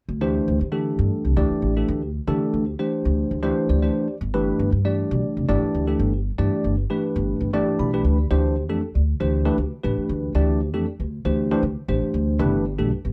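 Jazz with a slick, funky mood, cut from a longer piece, in which a woody pizzicato upright bass with steel strings sits up front beside a bright, bell-like tine electric piano treated with analog chorus, the piano adding short fills at 3.4 and 7.5 seconds over suspended and add-nine chords before the harmony shifts at 8.3 seconds, all set in a moderate club reverb.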